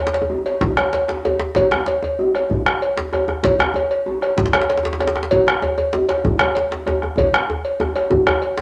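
The recording has a wet studio reverb that gives this short cut from a longer West African drum ensemble piece an earthy, powerful presence. A deep, dark bombo sits up front in a lively room, anchoring the 12/8 groove with a straight feel, while a metallic cowbell rings out from a smaller space at the same level. Two acoustic djembes join almost at once, the second entering at 0.3 s. One is close and struck with hard hands for a tight, cracking attack, and the other sounds distant in a large room, played with soft hands and set lower in the mix. A drum fill arrives at 7.2 s and carries the passage to its end at 8.6 s.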